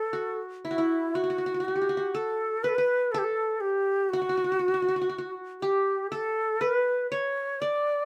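Warm and passionate, this short excerpt from an Arabic maqam ensemble piece moves at 120 BPM counted in eighths, in a straight-feeling 10/8. A bright, reedy ney carries the melody between E4 and D5, its end-blown cane tone airy and close-miked, with vibrato and tongued articulation placing it up front. Alongside it, a plectrum-plucked qanun plays a second line in the same range, its triple strings giving an acoustic sound with a bright edge, set somewhat lower in level but still forward. Both instruments play together throughout the 8.1 seconds, forming a single passage. A moderate studio reverb gives the pair a modest sense of space.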